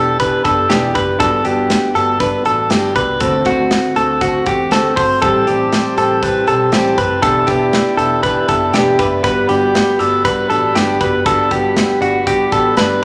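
Bathed in a wet large-studio reverb, this youthful, nostalgic jangly indie pop excerpt in G major moves at 119 BPM, with up-front compressed clean electric guitar arpeggios over full-bodied fingerpicked jumbo acoustic guitar with audible finger squeak, a dark, foam-muted round bass, a polished, airy drum kit with punchy kick, a very quiet close jingly tambourine, and a reedy, breathing pedal harmonium whose mellow sustained chords enter at 5.2 seconds across a progression of Em7, Gmaj7, D7 and Am7.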